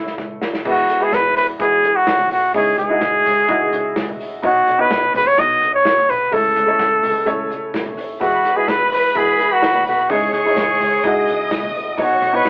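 Hopeful piano-driven pop in E major at 127 BPM, this excerpt opens with a short drum fill on an unplugged kit played with bundle sticks, while from the very start a breathy, whispered trumpet carries the melody up front over a clear, slightly detuned upright piano, a woody pizzicato upright bass in the background and a lush, distant violin section entering at 8.2 seconds, all heard through a rough rehearsal-room recording with a telephone-like tone.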